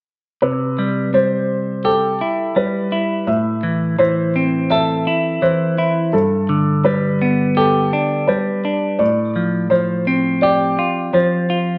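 A large studio space with a moderate 1.1-second reverb surrounds this short rock excerpt, tuned to A4 = 442 Hz and moving at a straight 84 BPM in 4/4 in C major. The mood is soaring and hopeful, carried by two arpeggiated parts that both begin at 0.4 seconds and run until 11.8 seconds. Up front sits a clean, fingered semi-hollow electric guitar with a scooped, hollow-body tone, spanning G2 to A4 and coloured by spring reverb and slapback echo. Behind it, a felt-muted upright piano arpeggiates higher, between A4 and E5, sounding soft, mellow and intimate, with a boxy, thin-felt character, audible action noise and its own slapback echo. The harmony moves from Cmaj7 to Am, then G, and settles on Fadd9/A, giving the passage a gentle, open lift.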